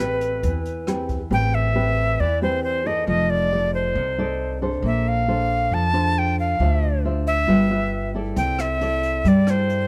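A breathy, up-front jazz flute with vibrato carries the melody over thumb-plucked nylon-string guitar and woody pizzicato upright bass in this smooth, intimate bossa nova fragment in A minor at 136 BPM, while a brushed drum kit with a boomy kick and rim clicks appears only from 0.2 to 1.2 seconds and again from 8.4 seconds, all set in light reverb as the chords move from Am9 through Bbmaj9 and G13 to a closing C69.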